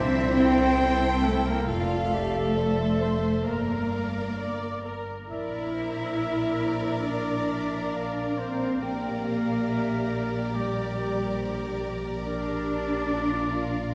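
A hopeful, moving cinematic passage in Bb lydian opens at once in a slow, rubato 69 BPM, with a lush violin section singing the expressive vibrato melody over a background line from more violins, a pure, hollow flute, a distant oboe and a very quiet clarinet, while smooth violas accompany, dark French horns sustain soft chords and cellos with rich double basses carry the bass through shifts from C6 to F, Gm and Bb, all bathed in a wet church reverb across this brief 13.9-second excerpt.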